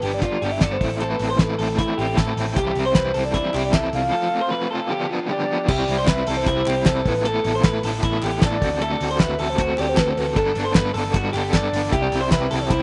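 Jangly indie pop at 154 BPM with a wistful, bittersweet mood, cut from a longer piece, where a soft, round synth lead with chorus, phaser and slapback echo carries the melody over an up-front overdriven semi-hollow guitar with tremolo, twangy, slightly broken-up arpeggios from an electric guitar through a small old amp, a foam-muted vintage bass, a thuddy cloth-damped drum kit with a fat snare and dark cymbals, and very quiet group handclaps entering at 3.0 seconds, all in a dry outdoor sound with nothing above 10.9 kHz, with a break from 4.1 to 5.7 seconds before the second section.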